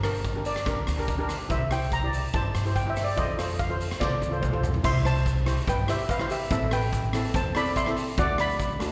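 Calypso at 144 BPM in a sunny, carefree mood, caught live through a venue's PA with recital hall reverb in a small room. A bright, close-miked double-seconds steel pan struck with hard rubber sticks carries the melody, with a slapback echo and an airy cello pan accompaniment beneath, while a woody, growly pizzicato upright bass and a punchy, gritty garage drum kit in a pumping stone room drive it along, and a grainy egg shaker sits in the background. The melody pan takes a solo over the opening 4.8 seconds, with a drum fill starting at 4.0 seconds leading into a second section settled in C major.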